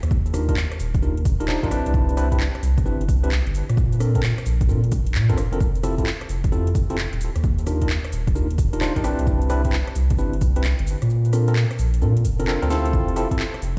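A swung 131 BPM two-step garage groove in F major bounces along with a soulful feel, built on a punchy, tape-warm analog kick that drops out from 11.1 to 12.9 seconds, an overdriven house kit of cracking snare, metallic hi-hats, handclaps, rim click and shaker that plays a drum fill at 12.7 seconds, a deep, thick, saturated sub bass pumping up front, and clean tine electric piano stabs through digital delay moving over Ebmaj9, Cmaj9, Bbmaj9 and Fmaj9, all heard as if played on a big sound system in a bare stone room.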